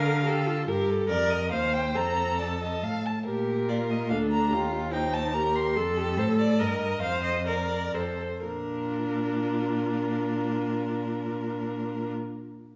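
A quick, lively classical-period string quartet movement in Bb major and 3/4, moving between 118 and 146 BPM with a rubato feel and slowing from 5.1 to 8.4 seconds before a brief new section arrives at 8.4 seconds. A rich, distant first violin carries the melody with vibrato, while a dark second violin adds a soft-attacked, expressive line with portamento, and a clear, close viola and an up-front cello supply the accompaniment and bass. The quartet sits in a wet recital hall with a touch of small-room ambience, and this short fragment is cut from a longer piece.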